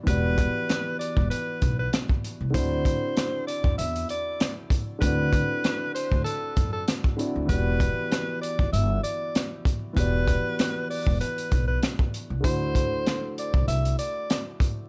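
A crunchy breakbeat kit drives a swung boom-bap groove at 97 BPM in 4/4, its tight kick, rim clicks, medium-tuned snare and hi-hat sitting up front with a saturated, gritty, rolled-off character. This tough hip-hop excerpt in E minor carries a dark mood as it moves between Em7 and D7. Pizzicato upright bass anchors the low end with a woody tone, while a grand piano comps underneath, mellow and vintage with long sustain, filtered and softened by cassette tape. From 0.1 seconds, a breathy tenor saxophone carries the melody up front in a jazz style, using subtone, vibrato and scooped notes, with tape echo trailing its smooth top. Light reverb and a layer of vinyl crackle frame the recording.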